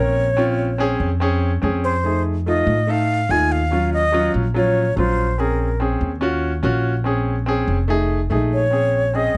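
A straight 4/4 pulse at 144 BPM drives this sultry, sophisticated slice of Afro-Cuban jazz in Bb minor, cut from a longer piece and cycling through rich minor-ninth and altered dominant chords. Up front, a breathy concert flute with vibrato and a crisp, reedy attack carries the melody, pausing at 5.8 seconds and returning at 8.5. Beneath it, a warm baby grand piano comps with short sustain, while a woody, growly pizzicato upright bass anchors the low end, all in light reverb.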